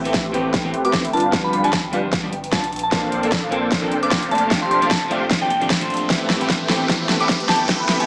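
Future bass at 151 BPM in A minor, bittersweet and dreamy, this short build-up cut from a longer piece rides a half-time, swung feel as huge, bright detuned supersaw chords sweep through a low-pass filter over an Am9, G7, Bbmaj9 and F69 progression. A punchy electronic kick and an up-front big-room kit with a massive snare and metallic hats drive a drum fill. A thick saturated sub bass and a slightly broken-up electric guitar with chorus and delay pump beneath them, alongside a background riser. From 0.8 s a soft, warbling FM bell carries the melody above a very quiet, airy pad, all set in a wet digital room with a small-speaker tone.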